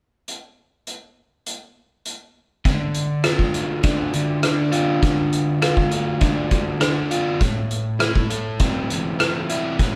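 Moody and cool, this indie rock passage from a longer piece moves at 101 BPM in D minor, opening with a loose acoustic drum kit of hi-hat, rim click and a punchy kick, its top rolled off and its sound roomy. At 2.7 seconds a bright, crunchy overdriven electric guitar enters up front with a double-tracked, picked riff over D minor, shifting to A minor at 7.4 seconds. The band plays live together in one room, and a moderate stone-room reverb gives the whole a natural, spacious feel.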